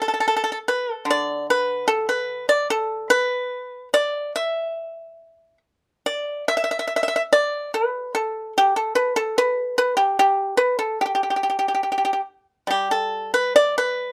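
Chinese traditional solo plucked-string music in a flowing, pastoral mood, this short excerpt features a bright, percussive, up-front pipa played with fingerpicks, ranging from D3 to E5 in the G gong mode at a rubato 72 BPM in 2/4, captured by close, detailed microphones with light reverb and moving into a new section at 12.7 seconds.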